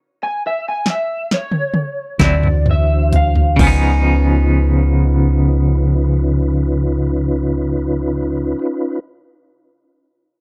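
A soulful, swaggering slow blues in 12/8, cut from a longer piece, opens with a slightly broken-up, twangy lead guitar through a small old amp, its picked melody coated in analog chorus and slapback echo. Beneath it a punchy analog drum machine, re-recorded in a small room and placed up front, rolls through a fill across crash, hi-hat, kick, snare and toms while the opening bars slow down, and the drums fall silent after 3.8 seconds. At 2.2 seconds the band arrives on a D9 chord: a bright, clean, compressed rhythm guitar with tremolo, a soft, flute-like tonewheel organ holding sustained chords through a slow rotary speaker and chorus vibrato, and a deep, round, dark fingered dub bass sitting up front in the mix. The harmony then settles onto Db9 as the lead guitar keeps singing over the organ's mellow bed. The sound is dry and intimate, a close 1970s-style studio take with a touch of digital ambience.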